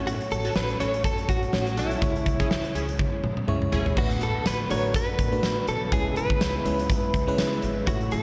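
1980s-style pop with a nostalgic, romantic mood, this short cut from a longer piece moves in 4/4 with a light swing on the sixteenths over chords of F#m/A and C#m, then Bm7/A and C#m7. A huge arena drum kit sits up front with a punchy kick, a fat snare, bright cymbals, hi-hat, tambourine and toms in a pumping room, capped by a drum fill from 3.0 to 4.0 seconds. A glassy FM electric piano with a bell-like attack and chorus carries the accompaniment throughout, while a woody, thumpy upright bass with gut strings is played pizzicato in the background. A clean, compressed electric guitar, picked and recorded direct, states the melody with tremolo and slapback echo. A funky, detuned polysynth comp adds punchy sawtooth stabs with a moving notch until 3.9 seconds, and from 4.0 seconds a very quiet, brassy analog pad with vibrato holds sustained chords, all set in a lush hall reverb that gives a big arena sound.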